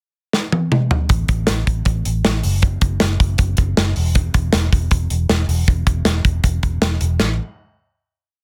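Jangly indie pop with a youthful, bright mood, this short whole piece moves in a straight 4/4 feel. A modern studio drum kit opens it, kicking off with a fill from 0.3 to 1.1 seconds before settling into a brisk indie backbeat. The acoustic kit sits up front with a tight kick and a medium-tuned snare in a small-room sound. At 1.1 seconds a vintage muted fingered electric bass joins for the verse, playing a driving eighth-note line low in its register, its tone dark, round and punchy with a foam-muted, amped character. The parts carry light reverb within a dense, heavily limited modern master, and the piece closes on a final note that rings out from 7.2 seconds.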